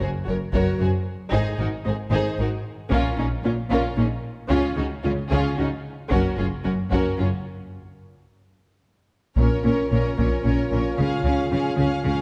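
A dark, concert-hall sheen frames this heroic, epic orchestral film cue in Bb minor at 113 BPM in 3/4, where a smooth violin melody with light vibrato rides over a lush second violin line, a focused, close viola accompaniment and a bowed cello and double bass foundation, heavy-stick taiko drums drive a build-up from 0.5 s before a chordless break at 7.7 s, and a distant, roomy French horn section enters with sustained chords at 9.4 s.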